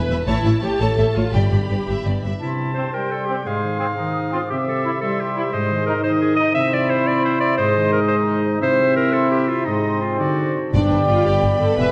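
This triumphant, heroic passage of adventure film score opens with a symphonic violin section carrying the melody over a focused, up-front viola section and a ringing concert harp, whose fingerpicked arpeggios continue through the whole passage. A distant studio violin section with portamento, smooth double basses and background cellos join almost at once, and soft-mallet timpani add a round, very quiet touch at 1.3 seconds. At 2.4 seconds the bowed strings give way to winds and brass. A bright, up-front clarinet and a clear oboe trace second lines, an airy flute ensemble with rolled-off highs sits above them, and a mellow horn section holds sustained chords. At 2.8 seconds a dark, roomy trumpet section adds stabs as the harmony moves between C and Ab in a straight 6/8 at 115 BPM. The strings and timpani return at 10.7 seconds as a D7 resolves to G, and a wet scoring-stage reverb surrounds the ensemble in this passage cut from a longer piece.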